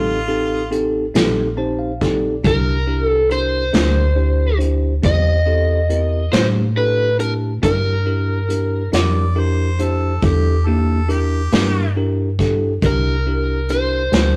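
An overdriven slide guitar, a warm harmonica, a bell-like tine electric piano and a round FM bass open this slow, gritty blues in a straight 12/8 feel, moving from F9 to C9. A muffled brush kit joins at 0.7 seconds, its punchy kick and medium-tuned snare sitting up front with a rolled-off, lo-fi top. The slide guitar carries the fingered lead with a warm, overdriven tone, while the bright, clean electric piano comps beneath it and slips in a fill at 1.2 seconds. The harmonica drifts back at 8.9 seconds as a distant, roomy second voice with light vibrato and a soft attack, played in a jazz style. The fast-attack digital bass anchors the low end with decaying notes, and a moderate stone-room reverb gives the rough rehearsal-room recording a rollicking, live character in this short cut from a longer piece.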